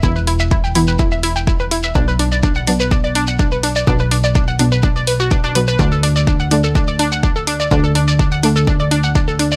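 A straight 4/4 pulse at 125 BPM drives this dark, cinematic melodic techno excerpt: a punchy, tape-warm kick sits up front, an overdriven electronic hi-hat enters at 0.3 s, and a close, grainy shekere adds texture, while a funky, wave-folded analog bass pumps beneath a bright, round analog pluck arpeggio and brassy, detuned synth stabs whose filter sweeps throughout from the background, both synths coloured with chorus and tape echo, as the harmony moves through Em, Bm and D in a dry, gritty mix.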